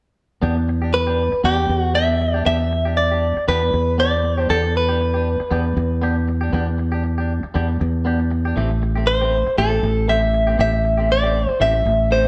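A clean, direct-recorded electric guitar carries the melody up front from 0.9 seconds, its picked tone warm and compressed with a touch of spring reverb, over a round, dark fingered bass and a bright, twangy clean guitar playing stabs further back with its own spring reverb. This brooding, mournful straight-eighth soul blues in E minor moves at 118 BPM with a light swing on the sixteenths, sitting on Em7 before shifting to Am7 at 8.6 seconds. The band sounds like it is playing live in one room with moderate studio reverb, in an excerpt cut from a longer piece.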